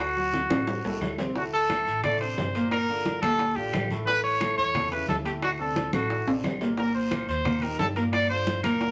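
A punchy, clear trumpet with scooped notes and a vintage, up-front tone leads this fast, passionate salsa excerpt at 177 BPM from the first beat, over a warm upright piano with long sustain and a dark, thumpy pizzicato upright bass on gut strings. Behind them sit ringing metal-shell timbales, bright damped congas, round low-tuned bongos, distant woody claves and a raspy, saturated guiro, with drum fills at 0.3 and 5.9 seconds. The danceable harmony moves from D through Gm7, A, D7 and Cm7, all set in a wet studio reverb.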